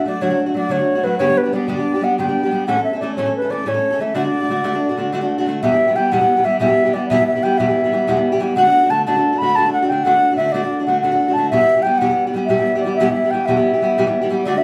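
A baroque flute and a fingerpicked steel-string acoustic guitar begin together, launching a lively Celtic slip jig in 9/8 at 122 BPM, counted in dotted quarters, with a straight feel and tuning set to A4 = 437 Hz. The flute carries the melody between B4 and B5 with a pure, warm, woody tone, vibrato and tongued articulation. Beneath it, the guitar sits up front with the fresh-stringed, bright ring of an auditorium-bodied instrument, its accompaniment spanning E2 to A4. The harmony moves through D, G and A before returning to D, and a second section arrives at 5.6 s, shifting between Em and D. A small room's reverb places the pair a little further back, lending a bright, lively air to this fragment cut from a longer piece, which ends at 14.6 s.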